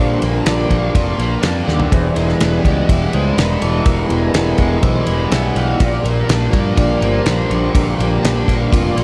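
A crunchy, bright guitar riff sits up front, double-tracked and coloured by flanger, driving this hypnotic, dark psychedelic rock excerpt at 123 BPM in 4/4 over chords moving from Bb to E and back. Beneath it, a round fuzz bass anchors the low end, while a vintage combo organ holds mellow, lightly vibrato-tinged chords and a reedy, breathing pedal harmonium drones on G2 in the background. A damped 70s drum kit with a fat snare and tight kick enters at 0.2 s and plays a fill at 1.7 s, all within a dreamy mix soaked in cathedral reverb.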